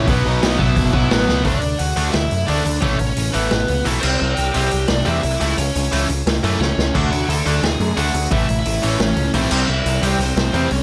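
A straight, driving punk rock pulse in four drops into a half-time feel at 1.5 seconds, after a quick drum fill. Another fill arrives just before the fuzz guitar returns at 6.9 seconds. This upbeat, rowdy cut from a longer piece is powered by a saturated garage drum kit with a boomy kick, a medium-tuned snare, hi-hat and crash in a small room, sitting up front with a gritty, rolled-off top. A growling picked electric bass, overdriven, punchy and equally forward, anchors the low end. Three guitars stack the riff. One bright overdriven picked guitar carries it, while a tight distorted guitar and a double-tracked fuzz guitar sit in the background. Above them, a raw garage lead guitar plays the melody with overdrive and digital delay. The sound stays dry and close as the chords cycle through B, D, A, C and A/C#.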